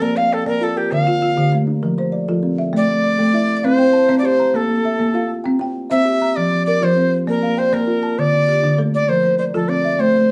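A small-room, moderately reverberant sound frames this rippling southern African traditional piece, cut from a longer work and built on an mbira-style interlocking cycle in 12/8, where a breathy, bright cedar flute with chiff and a reedy edge sits up front carrying the melody over close-miked, woody folk marimba arpeggios struck with medium hard mallets and softer, ringing kalimba arpeggios of mellow fingertip plucks, all three playing throughout.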